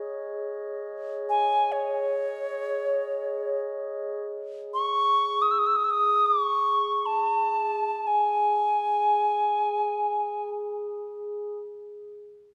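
Spacious and meditative, this free-time world meditation fragment opens with a glassy, ethereal glass harmonica texture whose slow-attack, beating tones sit low in the mix, before a bright, reedy alto ocarina enters up front at 1.3 seconds with a pure clay tone, vibrato and soft attack, carrying the melody until 10.5 seconds, while the harmonica lingers to 11.6 seconds within a wet recital-hall reverb and a dark production.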